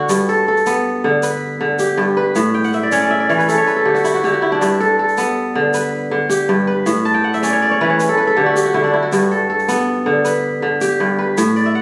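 Rolling in a 12/8 metre at 106 beats per minute, counted in dotted quarters, this joyful, hypnotic piece of West African string and xylophone music sits in G lydian and comes from a longer performance. The kora leads with fingerpicked arpeggios ranging from G2 to A5, its tone ringing and crisp, and it sits up front from 0.0 to 11.8 seconds. An egg shaker adds grainy, bright percussion close to the listener but far lower in the balance, running from 0.1 to 11.6 seconds. The harmony moves between G and A, with brief passages where the chords drop away, and the kora breaks into fills around 2.5, 7.1 and 11.6 seconds. The sound carries a moderate recital hall reverb layered with studio reverb and compression, captured on a phone in the room.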